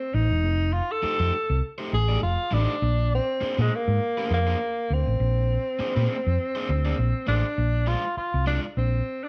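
Strutting and funky, this short cut from a longer piece rides a swung sixteenth-note groove over F9 and Bb9 chords. A breathy, whispered tenor saxophone carries the melody up front with subtone, vibrato, scooped notes and a soft attack, its intimate jazz-style sound framed by slapback echo and plate reverb. Beneath it, a round, dark, hollow-body fingered electric bass sits close and amped, while a crunchy overdriven guitar adds picked accompaniment lower in the mix from 1.0 to 8.6 seconds, all in a dark, lightly reverberant production that shifts to a new section at 7.6 seconds.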